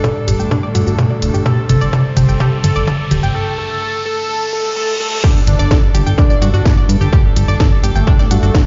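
Melodic techno with a melancholic, cinematic mood, this short cut from a longer piece moves in a straight 4/4 feel over a Gsus2 harmony. A distorted, overdriven electronic kick sits up front alongside an overdriven techno kit with a cracking snare, hi-hat, shaker, crash and toms, opening with a drum fill that runs to 3.3 seconds before a brief break. Beneath it all, a very quiet, evolving analog drone sustains while a distant, sul tasto string section holds sustained chords in the background. A round, full-bodied analog pluck spins arpeggios through chorus and tape echo, its filter sweeping across the build-up. A thick, wave-folded bass enters at 0.3 seconds, with a fat, detuned lead carrying the melody through subtle chorus and digital delay. The pluck, lead, bass and strings pump against the kick, and a riser climbs toward a reverse cymbal and impact that mark the drop at 5.2 seconds. 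The mix sounds as if played on a big system in a bare room, with large reverb and the highs rolled off.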